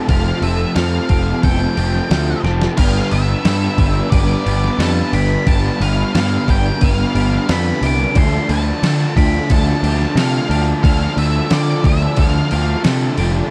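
A fuzzed, overdriven electric bass sits up front with a round, punchy tone, anchoring this wistful, hazy shoegaze and dream pop excerpt at 89 BPM in a straight 4/4, in G mixolydian. A clean 12-bit drum machine with a thumpy kick, fat snare and crash cymbal drives it, while two overdriven guitars play riffs: a semi-hollow one bathed in lush chorus and another tucked in the background with reverse reverb. Above them an octave-fuzz lead guitar carries a dark, distorted melody with slapback echo, and a very quiet twelve-string electric guitar adds bright, twangy arpeggios. A swirling, detuned analog pad with a phaser holds sustained chords only until 2.8 s, when a drum fill leads the harmony from Fadd9 to Gadd9, moving on to Dm at 8.2 s. The production is dark and dry, with little reverb in the room.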